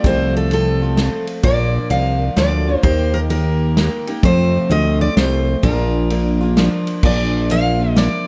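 A dark, lightly reverberant production gives this short honky-tonk and classic country clip a sunny, down-home feel, swinging in 3/4 at 129 BPM in Bb major. A bright jumbo steel-string acoustic guitar, picked and up front with plate reverb, carries the melody over a full-bodied dreadnought guitar picking the accompaniment, while a fat, thick analog bass with a sawtooth, wave-folded tone and a filter sweep sits up front. A natural studio-room drum kit with a punchy kick, medium-tuned snare, ride and crash keeps time as the chords move from F through Bb and Eb.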